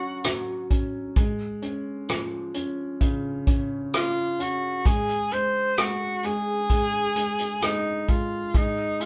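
A punchy, clear alto saxophone carries the melody with pop-style vibrato in this tender, heartfelt pop ballad excerpt at 65 BPM, over a woody, boxy upright piano whose audible action noise and long sustain feel intimate, while an acoustic drum kit played with bundle sticks enters at 0.2 s with hi-hat, a tight kick and rim clicks, the band captured live together in one room with moderate studio reverb.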